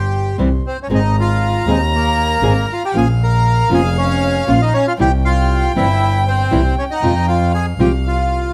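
Pulled by a free, rubato feel over a 4/4 metre, this dramatic, passionate tango passage is cut from a longer piece. A reedy, full bandoneon carries the melody up front, close-miked and touched by plate reverb. A single bowed violin traces a high second line with vibrato and portamento, its tone expressive and a little boxy. The bowed double bass sits close and prominent, biting and nasal with an earthy, airy edge and light vibrato. A small fingerpicked nylon-string guitar fills in the accompaniment from 0.4 s to 7.9 s, warm and acoustic, as the harmony moves from C through Abadd9 and Bbm, back to C, before settling on Fm, all within a light room reverb.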